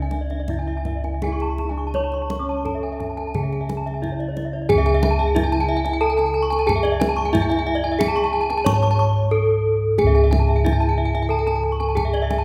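Bronze metallophones and bossed gongs ring out together at the start of this hypnotic, brilliant Balinese gamelan passage in C# pelog at 90 BPM in 4/4 with uneven beats. A dark, smooth horn-mallet melody with shimmering paired-tuning beats sounds alongside two arpeggiating metallophones, one bright and airy and the other boxy and warm, while round, up-front gongs carry the bass and a deep kendang struck with hard hands sits close and dry. A quiet, thumb-plucked classical nylon-string guitar adds a second line between 1.3 and 4.3 seconds, the music moves into a new section at 4.7 seconds, and the whole fragment is bathed in a wet recital-hall reverb.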